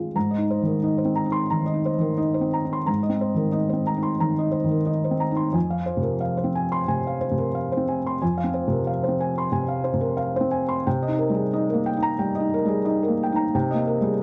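Rubato phrasing over a loose 90 BPM pulse in 4/4 shapes this intimate, reflective excerpt of neoclassical minimalist piano, where a solo felt-muted upright sounds soft, mellow and up front across a range from F2 to C6, moving through Abadd9, Fm at 5.6 s and Cm7 at 10.9 s inside a close, dry 1970s-style studio recording touched by moderate reverb.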